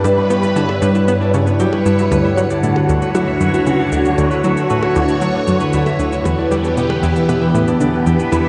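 Ambient, sequencer-driven space music with a cosmic, mysterious mood, this brief piece cut from a longer work moves through G, Dmaj7 and Em in a straight 4/4. Up front, a swirling, vintage phased string machine holds slow-blooming sustained chords through ensemble chorus and phaser, while a fingerpicked concert harp rings out arpeggios through tape echo and a round, detuned analog pluck drives a low riff with 12-bit sampler grit, chorus and echo. Faint electronic percussion blips and shaker sit deep beneath, the whole dreamy mix soaked in a long cathedral reverb with a softened, darkened top end.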